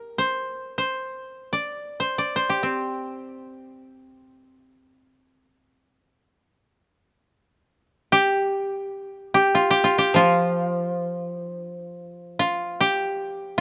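A bright, woody koto played with fingerpicks opens this austere, calm passage of traditional Japanese chamber music, unfolding its melody in free time within a C suspended pentatonic scale and sitting dry and up front. At 10.1 seconds a second, mellower koto enters beneath it with a low accompaniment on F. Close, detailed microphones and a light reverb give the recording an intimate clarity.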